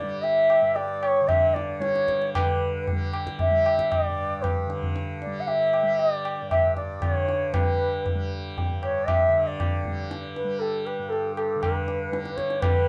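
Hindustani classical music in raga yaman on G, meditative and serene, moves in a straight 5/4 at 116 BPM and speeds up throughout this short cut from a longer piece. A pure, expressive bamboo bansuri carries the tongued melody with vibrato between A4 and F#5, while a softly plucked, buzzing tanpura holds a shimmering drone from G2 to G3, and low-tuned, ringing tabla, compressed and saturated and placed up front, enters at 0.2 seconds, all set in a moderate studio ambience.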